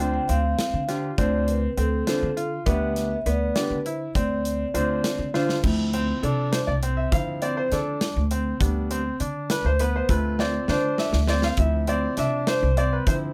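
Tense and intricate, this progressive instrumental for band moves in 5/8 at 202 BPM in eighths, a straight feel in D dorian with the tuning set to A4 = 435 Hz. A vibraphone struck with soft mallets, its motor off, carries a mellow, ringing melody only until 5.3 s. Under it, a clear, boxy grand piano sits up front with short sustain as accompaniment and then takes a solo from 5.6 s to the end. A second, brilliant grand piano weaves arpeggios with long sustain and audible action noise. A woody pizzicato upright bass on steel strings sits up front, while a big acoustic rock kit, boomy in the kick with a medium-tuned snare, enters at 0.3 s with crash, hi-hat, kick and snare, adding fills at 5.3 s and from 10.4 to 11.6 s. The sound is dry and closely miked, with harmony moving through chords such as G7sus4/D, Em7/D, Dm7, Gadd11/D and Dm13, in a piece cut from a longer one.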